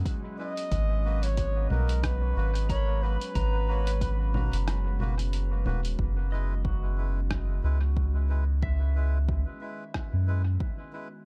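A relaxed 91 BPM groove in 4/4, swung on the sixteenths, anchors this meditative, spacious stretch of ambient dub, cut from a longer piece. An up-front, round sub bass holds the low end, while a deep, overdriven electronic kick sits farther back and drops out between 4.7 and 6.0 seconds. Beside it, a muffled, pitched-down sampler-style kit of congas, hi-hat and rim click adds gritty texture through dub echo. A warbling, detuned tape-like pad sustains chords beneath a pedal steel guitar, heard in the background, whose fingerpicked arpeggios carry slide and volume swells through analog delay and 12-bit grit. A veiled, bucket-muted trumpet with light vibrato sings a short melody from 0.4 to 5.0 seconds, and a reedy, nasal melodica stabs through dub echo as the harmony moves from F#9sus4 to G#m9 and returns to F#9sus4 at 6.0 seconds. The mix is dry yet echo-heavy, leaving plenty of open space around each part.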